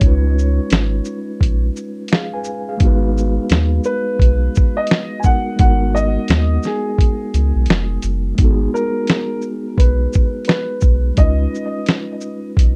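Melancholic and nostalgic, this short excerpt from a longer lo-fi hip hop piece moves at 86 BPM in 4/4 with a swung sixteenth-note feel, set in G# dorian. A dark, woody upright piano carries the melody from the start, its long sustain softened by a low-pass filter and trailed by tape echo before it drops out at 11.8 seconds. Beneath it, a mellow tine electric piano supplies the chords through built-in speakers, clean and filtered, moving from C#7 to G#m9 and back to C#7 near the close. A round, deep analog bass with a fast attack and a filter sweep sits up front, while a compressed, sampler-style drum kit pairs a thumpy kick and fat snare with muffled hi-hat and shaker, all carrying a tape-warm character. The dark production keeps the room dry and intimate as the passage shifts into a new section at 8.4 seconds.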